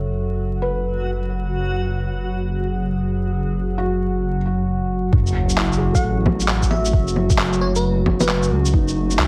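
Future garage at 133 BPM in F# minor with a swung, ghostly and rainy feel, this short excerpt opens on an F#m7 chord with a felt-muted upright piano carrying 12-bit grit and digital delay, a warbling lo-fi pad, a deep rumbling detuned saw bass, all pumping against the sidechain, and a reversed, dreamy granular texture over vinyl crackle, until an impact and a very quiet sub drop at 5.1 seconds bring in a soft overdriven kick, joined from 5.3 seconds by a muffled sampler-style shaker, handclaps and bongos, and, from 5.9 seconds, a sparkling bell-like FM electric piano melody washed in chorus, phaser and dub echo.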